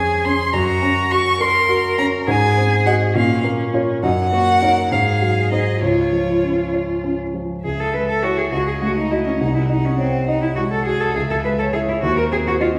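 A rich, smooth violin carries the melody throughout this graceful, lively excerpt of a quick classical-period movement for piano trio, its bowed line even and shaded with vibrato as it moves between C5 and Db6. Beneath it, a focused bowed cello with vibrato sits up front as the second line, while a warm grand piano with short sustain supplies the accompaniment across a broad range. The music moves in 6/8 at 68 BPM counted in dotted quarters, with a rubato feel. It opens in Db major, moving through Gb, Ab7 and Bbm before settling back on Db, then turns to C# minor at 7.6 s, where a G#7 over B# leads back to C#m and a closing Cdim/Eb at 12.0 s. The trio is heard from further back in a recital hall, surrounded by a wet reverb with a 1.5-second decay.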